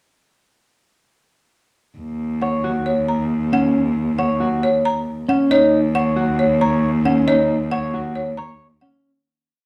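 Heard from further back in a large studio with a wet reverb, this short, complete piece of minimalist classical pattern music sits in Eb minor at 136 BPM in a straight 4/4, its mood hypnotic and meditative. A single bowed cello opens at 2.0 s, holding long, rich bass notes on Eb2 with vibrato and expressive portamento over one sustained Ebm7 chord. At 2.4 s a folk marimba struck with hard mallets joins on the melody, its dry, woody hardwood bars sounding bright and percussive between Db5 and Bb5 as it repeats a short cell. Alongside it, an electric guitar at the edge of break-up plays fingered arpeggios from Db4 to Db5, a twangy, compressed tone that cycles its own brief figure. The marimba is close-miked and up front, and the guitar and cello sit forward as well, before the whole texture fades out from 7.3 s.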